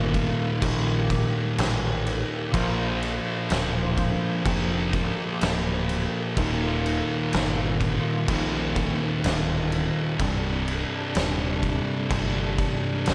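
Lightly reverberant and heavy, this brooding, hypnotic stoner and doom metal excerpt crawls at 63 BPM in a straight 4/4, led by an oversized, low-tuned acoustic drum kit sitting up front in a bright stone room, with gritty saturation, dark cymbals, a fat snare and a punchy kick. Two picked fuzz guitars grind through a murky riff in the background, joined by a bright, growling overdriven bass. A percussive tonewheel organ holds warm sustained chords with key click, chorus vibrato and slow rotary speaker, moving from Eb to Bb, back to Eb, and on to Cm at 10.2 seconds.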